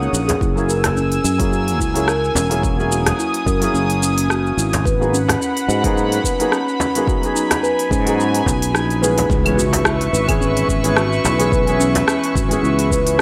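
This mystical, hypnotic organic downtempo excerpt features a felt-muted upright piano, mellow and intimate, playing accompaniment with delay and sidechain pumping. Above it sits an airy, breathy pad whose detuned, chorused chords also pump. A growly fretless electric bass sustains low, and an organic electronic drum kit sets crisp hats against claves, rim click and shaker at 108 BPM in 4/4 with a light 16th-note swing. A steel tongue drum played with soft rubber mallets rings out round, pure arpeggios through delay, joined by a close, dry frame drum played with soft hands and a deep electronic kick. The C# dorian harmony moves from F#9 to G#m9 and settles on C#m7 at 9.3 seconds, where a background electronic impact sounds until 11.5 seconds, all within a light reverb.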